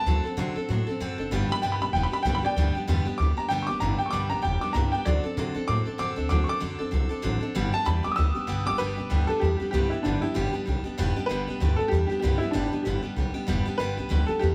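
Retro and rollicking, this swung rockabilly snippet, cut from a longer piece, features an intimate, slightly detuned upright piano with audible action noise that carries the melody and takes a solo through the first 8.8 seconds, set over a bright, full-bodied picked steel-string acoustic guitar with finger squeak and a dark, thumpy pizzicato upright bass on gut strings, the trio playing live together in one large studio room with moderate reverb.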